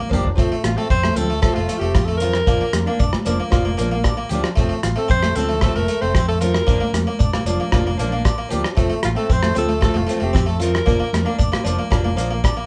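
Carefree and sunny, this highlife guitar band excerpt opens on a short fill from a cloth-damped, thuddy drum kit that sits up front, with a tight kick, hi-hat, rim clicks and toms. A round, plucked harpsichord plays arpeggios beside a boxy, picked old ladder-braced acoustic guitar with audible finger squeak, while a dark, amped fingered electric bass holds the low end, and bright, high-tuned congas in the distance join a very quiet, grainy shekere on percussion. From 0.6 s a clear alto saxophone carries the melody up front in jazz style, with vibrato, a soft attack and scooped notes, as the band plays together live in one room with moderate large-studio reverb.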